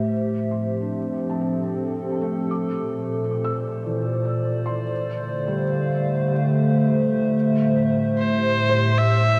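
A warbly, detuned tape-like pad sits up front with slow-attack sustained chords through Fmaj7, Bbmaj7, Dm7 and Am7, its chorus and built-in reverb giving this serene, melancholic ambient fragment in 3/4 a nostalgic lo-fi haze. Beneath it, a felt-muted upright piano fades in with soft, dark arpeggios, its audible action noise trailing into a diffuse ambient delay. At 8.2 seconds a rich, biting electric violin enters with a bowed melody full of vibrato and portamento, all held in a vast, echoing cathedral reverb with a cassette-tape character.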